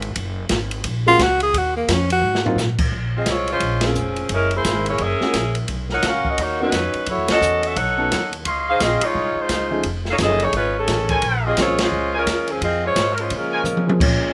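Sultry and dramatic, this big band swing excerpt in Bb minor moves at 173 BPM with a swung feel, as a woody, thumpy pizzicato upright bass and an open drum kit with dark cymbals and a boomy kick drive it from the start. A breathy, close-miked tenor saxophone states a brief solo line at 1.1 seconds over warm grand piano chords, before a clear, tight saxophone section with slapback echo takes the melody from 3.2 seconds, joined by soft-attack trumpet stabs with a vintage tinge from 8.4 seconds. A background trombone section with slapback echo adds a late second line, and the saxophones close on sustained chords, with band accents punctuating the passage and a dry sound throughout.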